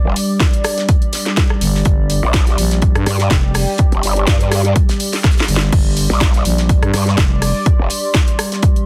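A dense, heavily limited modern master with very little reverb gives this bouncy, gritty bass house clip a packed, in-your-face sound, and it is cut from a longer piece. An overdriven electronic kick sits up front, layered with an overdriven house kit of cracking snare, bright hats, rim click and crash, while a dry acoustic 70s kit with a fat snare sits very quietly underneath, and a drum fill arrives at 5.2 seconds over a swung groove. The low end is carried by an aggressive, wobbling growl bass, saturated and compressed with chorus and a formant-filtered edge, joined from 1.6 seconds by a thick FM growl bass with tube saturation, both pumping against the kick. Behind them, an evolving sawtooth pad holds sustained chords with a swelling filter and chorus in the background. A warbling, nostalgic tape-like pad adds lo-fi, detuned, wave-folded texture with its own reverb, dark and vintage in colour, and it pumps along with the basses.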